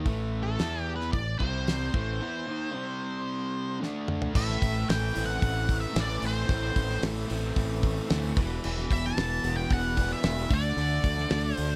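Lightly reverberant and driving, this brooding classic rock passage pairs a scooped, compressed distorted electric guitar riff with a warm overdriven guitar riff over an up-front, bright fingered bass and a dry, damped 70s kit with a fat snare and tight kick, while a dark octave-fuzz lead guitar with wah carries the melody from 0.4 s, and after a drum fill a very quiet, shouting tonewheel organ with key click and slow rotary speaker adds sustained chords from 4.4 s.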